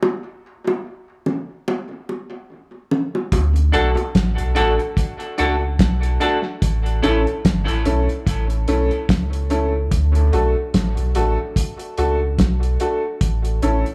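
Spacious and hazy, this dub reggae excerpt at 73 BPM in D major opens with tight, high-tuned bongos with tape echo playing alone until 3.3 seconds, when a round, sine-like sub bass and a cloth-damped, thuddy drum kit with a fat snare and rolled-off top arrive, soon joined by worn, woody, slightly detuned upright piano stabs and, until 7.2 seconds, a clean, picked semi-hollow electric guitar, both carrying tape echo, in an echo-heavy small-room mix that moves between D and A chords.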